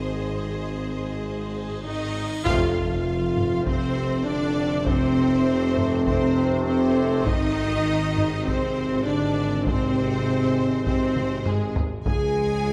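This triumphant, heroic stretch of epic orchestral film score, cut from a longer piece, opens on a full string and brass bed: two clear, lush violin sections with vibrato carry the melody and a second line, an intense viola section accompanies, and a mellow French horn section holds sustained chords over a bass of rich cellos, distant, even double basses and a mellow tuba. A huge, bright cymbal swell with a sub drop rises in the background from 1.5 seconds, leading into a band accent and impact at 2.5 seconds. There the trombone section enters with sustained chords, a soft, round timpani stroke lands very quietly, and solo taiko drums struck with hard sticks join in, their sound compressed and saturated. The harmony moves from Ab to F at the entrance and back to Ab, with a taiko fill near 11.2 seconds pushing toward a closing Db chord. A moderate scoring stage reverb and a dark production give the orchestra depth and weight.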